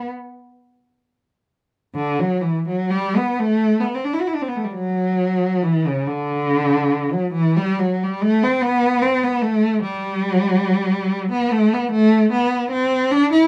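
Classical music for a lone bowed cello, mournful and meditative, unfolding in a free, rubato 6/8 as the single player shapes expressive lines with vibrato and portamento between C#3 and F#4, the instrument sitting up front yet faintly distant in moderate studio reverb across this 13.5-second passage cut from a longer work.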